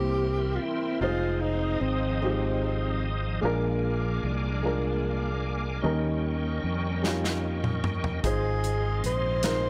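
A breathy, whispered tenor saxophone leads this slow gospel excerpt in Ab major, its dark, subtoned melody with scooped notes and a soft attack sitting up front from the start until 3.1 seconds, then returning at 8.3 seconds. Beneath it, a natural-sounding baby grand piano plays accompaniment throughout, while a round, punchy fingered electric bass anchors the low end. A reedy tonewheel organ holds sustained chords high above, its clean tone colored by key click, chorus vibrato and a slow rotary speaker, and a lush bowed string section adds sustained chords from the background. At 7.0 seconds an acoustic drum kit with a punchy kick and medium-tuned snare enters with a fill that runs to 8.2 seconds. In a straight 6/8 at 50 BPM, the hopeful, reverent mood moves through C7, Fm7, Bb7 and Eb7 before settling on Ab6, all wrapped in light reverb.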